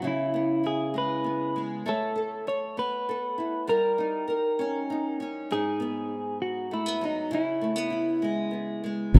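A bright, fingerpicked nylon-string guitar with fresh strings opens this melancholic, aching pop excerpt at 0.0 seconds, double-tracked and small but up front. A clean, picked electric guitar carries the melody alongside it, its compressed, warm tone sitting forward in the mix until it stops at 8.5 seconds. The piece moves at 66 BPM in a straight 6/8 in C# minor, tuned to A4 = 439 Hz. The chords run C#m7, Aadd9, D#7/G and G#m7 before returning to C#m7. A dark, round fingered electric bass with a direct, amped sound arrives only at 9.1 seconds, sounding a single low G#1 as the cut ends. A moderate plate reverb gives the rough home-demo mix a lingering tail.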